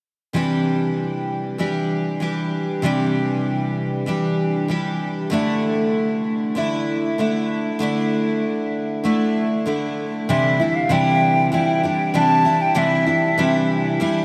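A picked steel-string acoustic guitar opens the recording at 0.3 seconds, full-bodied and up front, with a subtle chorus on its accompaniment as it moves from Cadd9 to Dsus2. This is carefree, sunny pop in C major at 97 BPM, in a straight 4/4 feel. The whole mix is soaked in a huge ambient reverb that gives it a dreamy, wet atmosphere. At 10.3 seconds the harmony returns to Cadd9 and a silver concert flute enters with the melody. The flute sounds airy and expressive, with vibrato, a crisp attack, rolled-off highs and a diffuse ambient delay. This short excerpt ends at 14.2 seconds.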